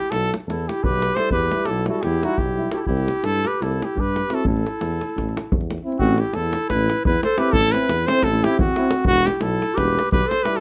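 The rhythm moves in a straight 9/8 at 349 eighth-note beats per minute, with a deep, close and dry davul driving it from the first moments. This is bittersweet, fiery Balkan brass band folk music in A minor, cut from a longer piece. A mellow trumpet carries the melody up front, and its light vibrato and soft attack give the line a classical poise. A clarinet plays a second line beneath it, while a warm tuba with a smooth top anchors the bass. At 1.2 s a euphonium and a trombone join as background accompaniment: the euphonium is clear, with light vibrato and a vintage tone, and the trombone enters softly and sits on E4. The harmony moves from E minor through C and A5, then a new section arrives at 6.0 s on A minor before turning back to E minor, set in a moderate small-room reverb.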